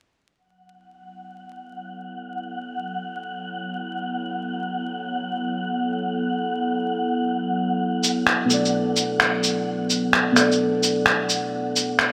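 Bathed in a lush hall reverb and carrying a vinyl crackle, the recording has a bright, 1980s-style digital sheen that suits this ghostly, rainy future garage fragment in B minor at 129 BPM, swung on the sixteenths. A breathy, wind-like tuned noise texture drifts in first at 1.1 seconds, airy and mellow, joined shortly after by a warbling, nostalgic tape-like pad that holds a Bm7 chord with a slow attack, detuned lo-fi character and a long, chorused release. The pad sits up front as the ambient bed fades in around it. At 8.0 seconds a compressed, pitched-down electronic shaker and finger snaps arrive, muffled and tape-warm as if re-recorded in a small room, with a gated reverb tail. Moments later, muted, felt-like synth keys add an intimate, full-bodied accompaniment with a dark sub-octave weight, fast-attack decaying notes, chorus and delay, before the passage breaks off as part of a longer piece.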